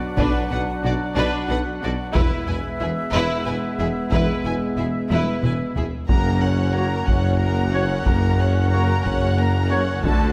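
A dark French horn section and a soft-edged woodwind section open with sustained chords, joined at 0.2 seconds by taiko struck with hard sticks, a low bed of mellow tuba, double basses and lush cellos, and bowed strings where an expressive, vibrato-rich violin melody sits over a second violin line and a very quiet viola accompaniment. This majestic, triumphant passage from an epic orchestral film score moves in a stately 6/8 at 61 BPM in F# mixolydian, travelling from Bm to E before a taiko fill at 5.1 seconds carries it onto F#. There, close-miked trumpet stabs ring out from 6.7 seconds, all bathed in the moderate reverb of a scoring stage.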